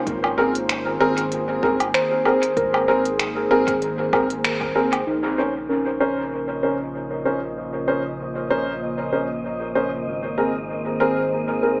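A warbling, nostalgic tape-like pad and a soft, pure FM synth bell playing chorused, echoing arpeggios open this hazy, meditative ambient dub excerpt, joined by a round, dark analog bass, a deep electronic kick in the background and an overdriven kit of finger snaps, crisp hi-hats and woodblock with dub echo that stops by 5.0 s, while a worn, woody upright piano sits up front with filtered, echoing stabs, the bell takes on a filter sweep from 5.1 s, and an airy, breathy wind-like noise texture enters at 6.5 s, the mix carrying a small-speaker sound and moderate digital reverb.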